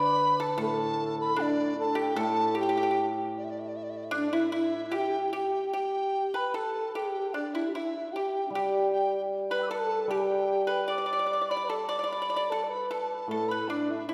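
Chinese traditional chamber music, festive and graceful, in a rubato 2/4 at 76 BPM in the D zhi mode, with a large dizi carrying the melody up front in a buzzing, hollow tone with vibrato and a crisp attack, a breathy, close-miked xiao and a dry, percussive fingerpicked pipa playing second lines beneath it, and a shimmering hammered dulcimer ringing low in the accompaniment, dropping out at 4.5 s and returning at 8.5 s, while a new section begins at 5.3 s, all heard from further back in a reverberant concert hall.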